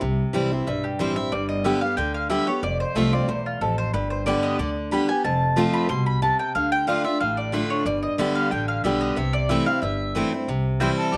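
Straight 4/4 bluegrass, lively and virtuosic, with a bright, freshly strung picked steel-string acoustic guitar and a dark, thumpy pizzicato upright bass underneath as a woody, up-front mandolin takes the spotlight in slapback-echoed stabs, all caught dry in the open air, before a rich, nasal bowed fiddle slips in at 11.0 seconds just as this cut from a longer piece ends.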